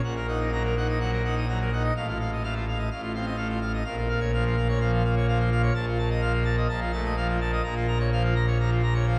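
This classical organ toccata, cut from a longer piece, runs 9.2 seconds and has a majestic, dramatic mood in a straight four-beat metre. A solo pipe organ on full organ carries everything, spanning A1 to Bb5 with bright mixtures and a romantic voicing. Its sound is brilliant and placed up front, yet it sits in a wet church reverb whose long 3.4-second decay fills the space around each chord. The harmony moves from Ebm/Bb through F7/A to Bbm, then F7/Bb, before settling back on Bbm at 7.6 seconds. The result is a grand, dramatic burst of sound.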